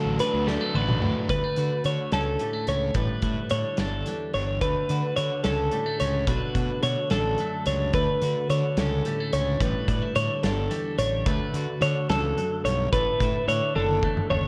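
Intricate and bright, this math rock and midwest emo passage in 6/8 sets a twangy twelve-string electric guitar playing arpeggios through spring reverb and analog delay over a second clean, compressed, up-front twelve-string's accompaniment. A double-tracked, crunchy overdriven guitar riff sounds only until 1.3 s, a dark, round fuzz bass enters at 0.1 s, and a loose indie drum kit with a punchy kick and a gritty, pumping room adds fills. The whole passage carries the wear of old cassette tape with warbly pitch drift as the chords move from Dmaj7 through A7sus4 and Bm7 to a closing Asus4.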